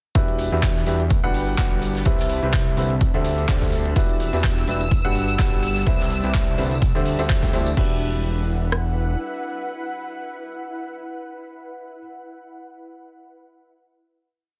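A punchy analog drum machine drives this energetic, soulful piano house piece in E minor at 126 BPM with a four-on-the-floor kick and rim clicks, joined by a garage kit's crisp hats, claps and crash, a very quiet street-band kit of hi-hat and snare, and a dry tambourine from 4.0 seconds. A clear, woody upright piano plays dotted-rhythm chords through Em9, Gmaj7, Cmaj7 and D9sus4 with digital delay, over a fat, saturated sawtooth bass that follows the chord rhythm, while an ethereal pad sits in the background and a silky string pad holds a high E6, with the piano, bass and both pads pumping to the sidechain. Most of the drums fall away for a final Em9 chord at 7.8 seconds, the drum machine lasting until 8.8 seconds and the bass until 9.2, while the piano and airy pad ring out in a small room with a dense, heavily limited modern master.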